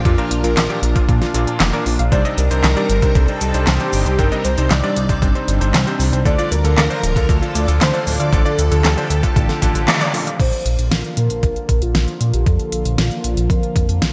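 Synthwave at 116 BPM in Bb major, nostalgic and romantic, drifting from Bb through Cmadd9 and Dm to a Bbmaj7 in this cut from a longer piece. A velvety, vibrato-touched synth lead carries the melody over a dark, glossy chorused synth bass, a swirling phased analog pad pumping with sidechain, shimmering string-machine violins playing a second line, soft round delayed plucks in arpeggios, and clangy, clear electric grand piano stabs. Up front sit a thumpy overdriven electronic kick and a fat-snared pop kit with crisp hats, handclaps, shaker and crash. The strings fade out just before a band accent at 9.9 seconds, and the plucks and piano drop away around 10.3 seconds, all bathed in lush hall reverb and bright 1980s-style digital production.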